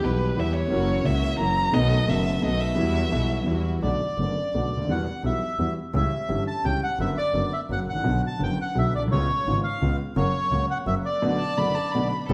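A reedy, dark bandoneon carries the melody of this dramatic, passionate tango from 3.8 seconds, sitting up front as the key moves from E minor to B minor. Before it arrives, a violin opens with a solo, its expressive, distant tone shaped by vibrato, portamento and a soft attack, and it returns briefly at 11.4 seconds as a second line. Throughout, a concert grand piano with deep bass and a smooth, vintage colour supplies the accompaniment. A close, biting double bass, bowed by one player with an airy, nasal edge, earthy grain and light vibrato, holds down the low end. A lush studio string section adds very quiet stabs during the opening passage only. The excerpt moves at 171 BPM in 3/4 with a rubato feel, set in a recital hall reverb that lends a roomy glow.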